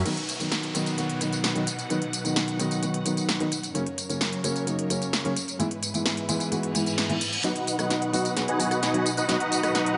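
Euphoric and anthemic, this festival progressive house passage pairs a dark, mellow baby grand piano with dub echo against lush, woody bowed strings and a punchy, layered big-room drum kit with crisp hats, tambourine and rim clicks, while electronic downlifter, reverse cymbal and riser effects sit in the background. A huge, detuned supersaw riff with dub echo and a low-pass filter flashes briefly at the start, then returns at 7.4 seconds, when a filter sweep on it and a drum fill drive a build-up. The mix sits in a moderate hall reverb with a soft top end, cut from a longer piece.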